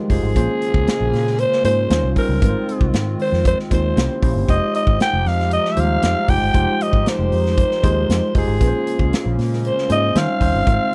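Polished 1980s jazz-funk pop in F minor at 116 BPM, this short excerpt cut from a longer piece carries an urban, slick mood over a straight 4/4 groove. A growling alto saxophone leads the melody up front, its breathy, raspy tone colored with vibrato and a smooth top as it plays a jazz-style solo line from 0.1 s onward. Beneath it, a mellow tine electric piano with a worn, slightly out-of-tune character and lush chorus supplies the accompaniment, while a hollow, flute-like pad sits softly in the background, holding sustained chords with a slow attack and long release. A vintage foam-muted fingered electric bass gives a dark, round, punchy low end, and a modern studio drum kit plays hi-hat, tight kick and medium-tuned snare with a roomy, distant feel and rolled-off top. The harmony moves through Bbm9, Eb13, Ab6 and C7b9 before settling on Fm9 and returning to Bbm9 and Eb13, all in a dry mix with little reverb.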